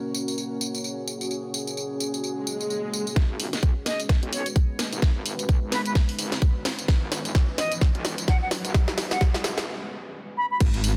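Bass house at 129 BPM in G# minor with a bouncy, swaggering swing, opening on a deep, moody pad and an airy, breathy pad over an F# chord with cracking garage drums and tambourine, before a swell at 2.4 seconds gives way at 3.2 seconds to a tight, up-front kick, a metallic, aggressive FM wobble bass on G# minor and a riser, while from 3.9 seconds a distant silver concert flute with vibrato and tape echo carries the melody until a short break at 9.7 seconds in this dense, heavily limited cut from a longer track.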